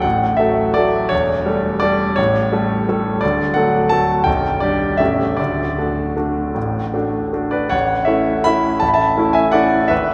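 A brilliant, up-front grand piano plays a playful, graceful classical waltz in D major alone, moving freely in 3/4 at about 150-180 BPM with rubato, spanning A0 to B5 through chords such as D, A7/E and G/B, turning to a new passage on A at 7.7 seconds, all set in a wet church reverb with a long 2.8-second tail, in this short cut from a longer piece.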